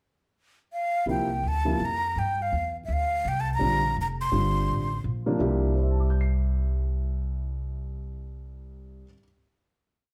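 A breathy metal flute opens this complete modal jazz piece at 0.7 s, spinning a motif-based melody of call phrases with vibrato, a soft attack and lifted highs. At 1.1 s the upright bass and grand piano enter: the bass walks in pizzicato with a woody, steel-strung tone, while the warm piano comps in syncopated quartal voicings with short sustain. The music swings lightly in three, and its hypnotic, open mood rests on a single suspended C9sus4 harmony. The expressive flute line falls away before the group settles onto a plain C chord at 5.4 s, where the piano rings on the longest. Flute, bass and piano each sit up front, yet the trio is heard from further back in a large studio with moderate reverb.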